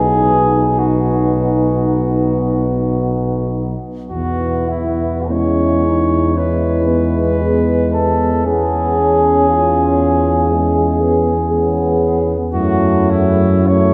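A mellow, punchy flugelhorn carries the lyrical melody up front in this hymn-like classical excerpt for brass band, unfolding slowly in a rubato 4/4 at 48-61 BPM in E major, while a distant, roomy French horn section sings a second line beneath it. A soft-attacked euphonium and a trombone with vibrato and a smooth top supply the accompaniment from the background, and a tuba anchors the bass up front as the harmony moves from B to E at 4.1 s and to F#m7 at 12.5 s. The band is heard from further back in a cathedral with a long, wet reverb that lends the music a warm glow.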